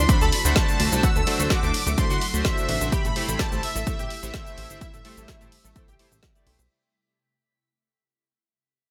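Progressive house at 127 BPM, expansive and driving, where a smooth, full-bodied supersaw melody pumps and echoes over a very quiet airy lead, a shimmering ethereal pad, a chorused analog pluck arpeggio, glossy retro polysynth stabs, a funky plucky bass, a reversed swelling texture, a deep house kit with a woody snare and dark hats, and an overdriven punchy kick up front, moving from D7 to Am7 at 2.9 seconds in a fairly dry mix cut from a longer piece.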